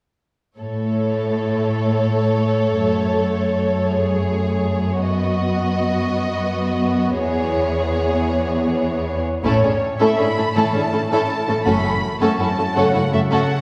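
Set in a straight 12/8 at 109 BPM, counted in dotted quarters, this soaring, adventurous cinematic string passage in A major is cut from a longer piece. A lush violin section sings the expressive, softly attacked melody with vibrato over an even second violin line, a focused viola accompaniment and an up-front cello bass. At 9.4 s a bright, ringing fingerpicked harp adds background arpeggios, and a rich double bass section sits beneath until 11.8 s, while the harmony moves from A through F#madd9, B/F# and E6 before returning to A and F#m, all heard from further back in the room through a wet scoring-stage reverb.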